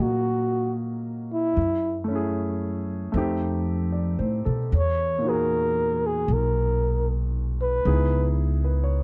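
A dark, breathy flugelhorn carries the melody of this intimate, melancholic jazz ballad, its whispered tone, soft attack and vibrato sitting up front until it falls away at 8.4 seconds. Underneath, a warm grand piano accompanies through minor-seventh and extended chords while a woody upright bass, played pizzicato and placed up front, anchors the slow 76 BPM swing. The dry, close sound of a 1970s-style studio frames this short fragment from a longer piece.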